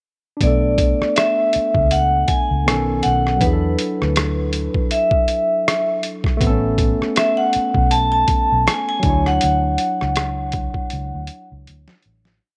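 R&B and neo-soul in an introspective, smooth mood, this short piece sets a vibraphone struck with hard mallets up front, playing a ringing, metallic motif-based melody with medium motor vibrato in a boxy small room. Beneath it, a barky, lightly overdriven tine electric piano holds drop2-voiced chords with grace notes, a dark, foam-muted fingered bass plays a round, laid-back line with ghost notes and slides, and a gritty, pitched-down boom bap sampler-style drum kit lays a tape-warm, laid-back neo-soul beat with a thumpy kick and ghost notes. The whole piece fades out from 9.4 seconds, with a drum fill arriving at 10.9 seconds, shortly before the vibraphone stops at 11.5 seconds.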